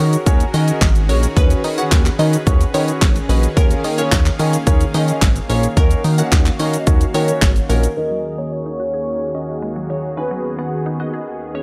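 Opening on a soft supersaw with sidechain pumping over a concert grand piano with audible action noise and a chorused, glossy synth bass, this confident, bittersweet dance-pop excerpt at 109 BPM adds a punchy, overdriven pop drum kit of kick, fat snare, handclaps, hi-hat and shaker, and a crystalline wavetable pluck melody; at 8.0 seconds the drums and bass drop away during a filter sweep, and a velvety synth lead and a woody, mallet-like pluck playing arpeggios through analog delay join over Gbadd9/Eb and Db7sus4/Eb chords in a dry, gritty hardware recording.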